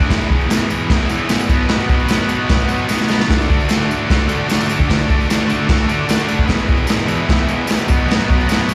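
Heard as a live gig through the venue's PA, with small room ambience and recital hall reverb, this raw, rowdy garage rock excerpt charges along at 150 BPM in a straight 4/4, moving through E, B, D, E and B in E mixolydian. A thick, bright fuzz guitar riff, double-tracked with slapback echo, sits up front beside a saturated, gritty breakbeat drum kit with dark cymbals and a tight kick, which throws in a fill at 2.9 seconds. In the background, a buzzy vintage combo organ holds overdriven chords and adds its own fill at 5.9 seconds, while a jingly tambourine rattles along.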